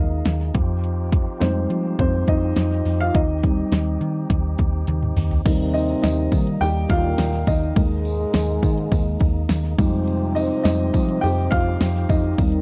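Dry and close, with the feel of a 1970s studio, this piano-driven pop excerpt moves at 104 BPM in a straight 4/4 with an uplifting, hopeful mood. A dark, woody, boxy upright piano carries the lead from the start, backed by a round, foam-muted electric bass and a punchy, layered pop drum kit with a fat snare, metallic hats and an overdriven edge. Underneath, a tonewheel organ holds sustained chords through light overdrive and a fast rotary speaker, adding a fat glow. A drum fill at 4.9 seconds leads into the second section, and a smooth-topped French horn section enters at 5.4 seconds with a classical, lightly vibrato second line. A jingly tambourine joins at 5.5 seconds, sitting distant in the background, as the harmony circles through Fm7 and Absus2 over Eb.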